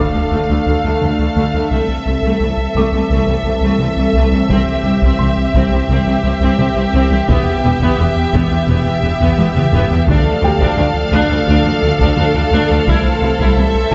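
Heard in a moderate concert hall reverb with a dulled top end, this futuristic, relentless hybrid orchestral and electronic film score cue moves at 86 BPM in D dorian: an intense, distant violin section carries the melody over a smooth second violin line, a lush viola section, rich cellos and focused double basses, while a hollow, chorused soft pad, a rubbery square bass riff and a dark concert grand piano texture sit in the background, a huge sub drop marks the opening impact until 1.7 s, and a background taiko ensemble played with heavy sticks enters at 4.5 s and adds a fill at 9.4 s.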